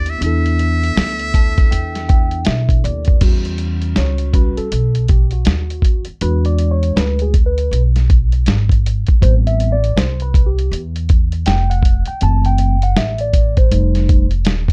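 A dark, warm production with little reverb gives this excerpt from a longer jazz-hop track a close, intimate sound, its mood mellow and cool at 80 BPM in E minor with a swung sixteenth-note feel. A muted trumpet opens with a brief, buzzy, thin melody between D5 and E5, touched with light vibrato and a slapback echo, before dropping out at 2.4 seconds. The mellow tine electric piano, clean and colored by a phaser, plays a fill from 1.0 seconds and then takes over with a solo from 3.2 seconds, moving through chords such as Em69, E7, Am7 and F#m7b5 before landing on F9. Underneath, a woody pizzicato upright bass sits up front, while a compressed, pitched-down, muffled sampler-style drum kit with a thumpy kick, medium-tuned snare, hi-hat and crash is the loudest element in the mix.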